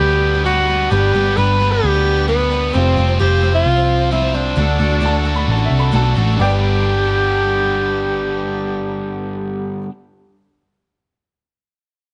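Hopeful and jangly, this short folk rock and heartland rock passage moves with a straight 4/4 feel through G, Fsus2 and D before landing back on G. A breathy tenor saxophone carries the melody up front, its whispered, intimate tone marked by vibrato, a soft attack and a smooth top. Beneath it, a round, dark hollow-body electric bass sits prominently, while a double-tracked, bright overdriven guitar drives a biting riff. A shimmering, octave-doubled twelve-string acoustic guitar rings in the background with faint finger squeak, and a very quiet grand piano adds accompaniment with audible action noise. At 5.1 seconds a woody upright piano with short sustain enters in the background on a high second line. Light reverb surrounds the whole, and the top end is rolled off above 10.5 kHz.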